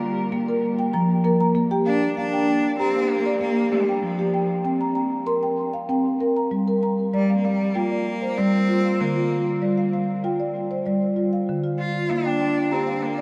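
Meditative world music built on tuned percussion, this gentle, calm passage is taken from a longer piece and moves in a straight, unhurried four. A marimba with soft mallets opens alone, playing arpeggios across a broad span of its rosewood bars, and its woody, round, mellow tone sits up front in the mix. At 1.9 seconds a single bowed cello enters with the melody, a bright, biting and intense voice with vibrato that sounds distant behind the marimba. Both instruments carry a diffuse ambient delay, and the whole recording sits in a huge, wet reverb that places the music in a vast, echoing space with a long, lingering tail. The harmony drifts from Bb through C5 and Gm before settling back on Bb near the close.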